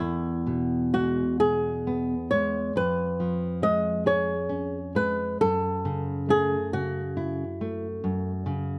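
In a slow, rubato 12/8, pulsing at roughly 41-47 BPM in dotted quarters, this short romantic guitar duo drifts with a serene, tender mood. The fingerpicked flamenco guitar carries the melody in its upper register, its warm acoustic tone sitting up front. Beneath it, the nylon-string guitar supplies a classical accompaniment that reaches down into the low register, dark and full-bodied, also close and up front. The harmony moves from E to C#7/E# at 2.8 seconds and settles on F#m7 at 5.4 seconds, with both guitars playing throughout the 8.8-second section, tuned slightly high to A4 = 445 Hz. Close, detailed miking and a light reverb keep the sound intimate, and the passage is cut from a longer piece.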